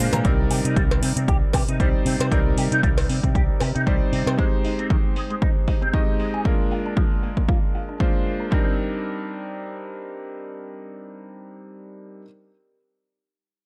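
A swung 16th-note groove at 116 BPM in 4/4 opens with a drum fill, carried by an up-front, punchy electronic kick with overdrive and a house drum kit of metallic hi-hat, shaker and toms, overdriven and dulled by low-pass filtering, both re-recorded in a large room. This sleek, groovy nu-disco passage in C minor cycles through Cm9, Abmaj7 and Bb7. A bright, directly amped fingered bass with an envelope filter and a close, dry cowbell play from the very start, then both drop out at 4.4 seconds. A clean, twangy picked electric guitar, also run through an envelope filter with ensemble chorus and a low-pass filter, plays the riff, shaped by a filter sweep, until 8.8 seconds. After that, the vintage electric grand piano, with its clangy bass, long sustain and analog delay, carries the accompaniment alone to the end of this section cut from a longer track, in a dry mix with little reverb.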